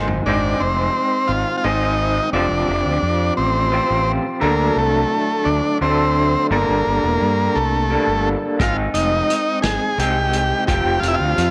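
Swaying in a slow 6/8 at 58 BPM, this hazy, kaleidoscopic psychedelic rock excerpt opens with a brief drum fill before a buzzy combo organ with heavy vibrato and tape echo carries the melody up front over a slightly broken-up guitar riff with tremolo and a punchy, fuzz-soaked fingered bass, all bathed in moderate spring reverb as the chords move through Ab, Fsus2, D and Gmadd9, until the muffled, lo-fi drum kit returns at 8.6 seconds.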